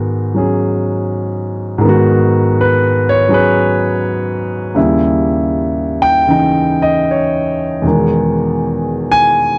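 Dark, lightly reverberant production frames an up-front grand piano with a warm tone and long sustain, playing solo jazz in G# minor at 81 BPM with a late-night, swinging 4/4 feel loosened by rubato, moving from G#m7 through D#7b9 to Emaj7 across this 9.6-second cut from a longer piece.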